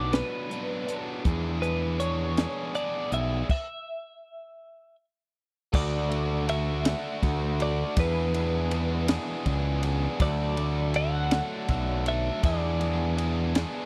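Upbeat and carefree, this indie rock excerpt moves at 54 BPM in a straight 6/8 in E mixolydian, with a stop from 3.5 to 5.7 seconds before the second section opens on a Dadd9. A clean, twangy, compressed twelve-string electric guitar carries the melody with a slapback echo over a biting, double-tracked overdriven guitar riff, while a growling, overdriven picked bass sits up front. A compact cocktail kit with a punchy kick, high-tuned snare and dark cymbals plays throughout in a dry, close 1970s-style studio sound.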